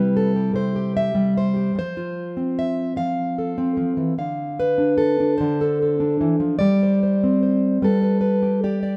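A fingerpicked steel-string acoustic guitar opens on a C chord and carries this short folk excerpt entirely on its own. The mood is gentle and warm, moving at an unhurried pace in a straight 6/8 lilt. The plugged-in jumbo guitar has a full-bodied tone and sits up front, spanning from the low C3 up to F5. Its harmony moves from C to F at 1.8 seconds, then to Dm at 4.2 seconds, before shifting to Gsus4 at 6.6 seconds and resolving to G near the close. A moderate stone-room reverb gives the live performance a natural sense of space around the strings.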